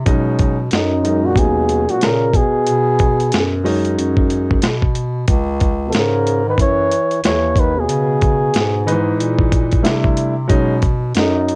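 A breathy flugelhorn carries the melody from 0.7 seconds, with scooped notes and a cassette-tape haze, over a punchy trombone second line and a mellow, close-miked bass clarinet holding down the low end. This is a smoky, mellow jazz-hop excerpt at 92 BPM with a swung 16th feel, driven by a gritty, overdriven, compressed sampler-style drum kit with a thumpy kick and medium-tuned snare. A dark, vintage grand piano bathed in plate reverb colours chords like B69 and C#m9, dropping out at 4.6 seconds and returning at 8.9 seconds, all within a lo-fi home cassette sound.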